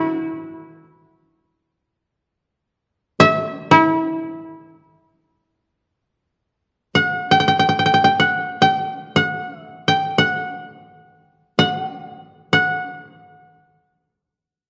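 In free time, this austere, solitary excerpt of Japanese traditional chamber music sets a single koto, plucked with fingerpicks, alone from 0.0 to 14.7 seconds, moving between E4 and G5 in the E hirajoshi scale with A4 tuned to 435 Hz. The koto sounds woody, dry and up front, and its opening phrase returns at 6.0 seconds. A moderate recital-hall reverb surrounds the playing, and worn cassette tape adds a warbly drift in pitch.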